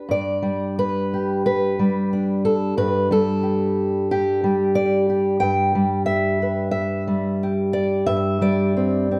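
This is a short folk piece for solo fingerstyle acoustic guitar, an excerpt cut from a longer performance. The mood is warm and gentle, and the playing moves in a loose rubato feel over a 4/4 metre. A fingerpicked steel-string acoustic guitar plays alone from the start to 9.2 seconds, ranging from G2 up to G5 with a dark, auditorium-sized tone and a slapback echo. The harmony opens on G, moves to Em/G at 5.4 seconds and settles on C/G at 8.1 seconds. The guitar sits up front in light reverb, captured by close, detailed microphones that also pick up a faint mains hum.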